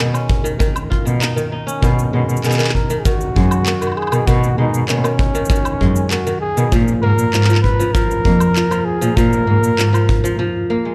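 Warm and pastoral, this 98 BPM folktronica clip from a longer piece sets ringing, fingerpicked kora arpeggios, softened by a low-pass filter and tape echo, over a woody, bowed cello bass with vibrato and portamento, while overdriven electronic woodblock, cabasa and handclaps and a punchy kick, both bathed in studio reverb, drive the straight 4/4 pulse; a breathy, intimate flugelhorn enters at 2.4 seconds with its own tape echo as the harmony moves from C#add9 to G#m7 and A#5, all in a dark small-room production that closes on a brief break at 10.4 seconds.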